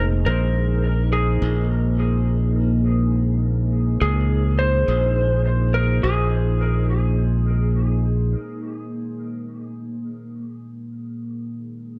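Opening together, a growly, up-front fingered electric bass, a dub-echoed slide guitar melody and a deep, warbling detuned pad with chorus and vintage sampler grit set a spacious, hazy ambient dub groove at 104 BPM with a swung 16th feel over Bb9sus4, the guitar stopping at 6.9 seconds and the bass at 8.3 seconds so the pad carries the break alone before shifting to Bb7sus4 at 9.5 seconds in this excerpt cut from a longer piece.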